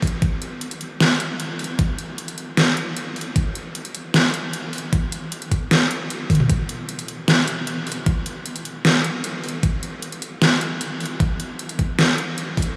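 Future bass at 153 BPM in a half-time feel, bright and euphoric, cut from a longer piece and heard here as drums only. An overdriven, knocking electronic kick sits up front beside a layered pop kit of hi-hat, deep snare and toms, both parts playing throughout and re-recorded in a small room, with a drum fill at 6.3 seconds. The whole mix is soaked in a huge, dreamy ambient reverb with an eight-second tail.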